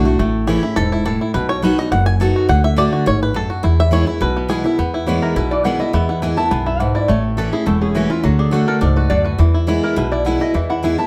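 A bright, twangy banjo takes a fingerpicked solo from the start, driven along by a full-bodied picked steel-string guitar with audible finger squeak and a woody, thumpy upright bass, both placed up front in this lively bluegrass excerpt cut from a longer piece. At 5.1 seconds a mellow, nasal lap resonator guitar joins with a metallic slide melody carried on a slapback echo, and the band moves through chords of A, D and E. The whole group sits back in a wet studio room, keeping a driving, straight four-beat pulse.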